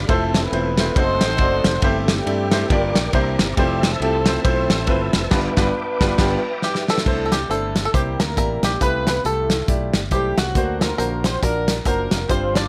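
Hopeful and uplifting, this uptempo gospel excerpt at 138 BPM in C major swings along on a punchy electric bass, a dark-cymbaled soul drum kit sitting up front, and a deep-voiced vintage grand piano, while a mellow horn section carries the melody in octaves with light vibrato, a clean tonewheel organ with key click and slow rotary speaker holds chords in the background until 7.0 seconds, and a bright, twangy fingerpicked banjo joins the melody at 6.6 seconds, as a drum fill and an ongoing band accent lead into the second section.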